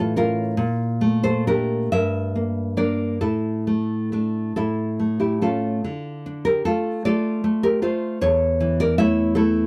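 Intimate and wistful, this romantic piece for solo classical guitar moves slowly in 6/8 at roughly 42-55 BPM counted in dotted quarters, with a free, rubato feel in D minor and tuning set to A4 = 438 Hz. A single fingerpicked nylon-string guitar carries everything, ranging from E2 up to E5, and its tone is dark, woody and full-bodied, coming from old strings. The opening passage drifts from A through Bbmaj7, Em7b5/G and Asus4 before settling back on A, and a new passage beginning at 5.8 s turns to Dm and then A/E. The guitar sits up front in a dry, close 1970s-style studio sound, touched by only a light reverb. This 9.7-second fragment is cut from a longer piece.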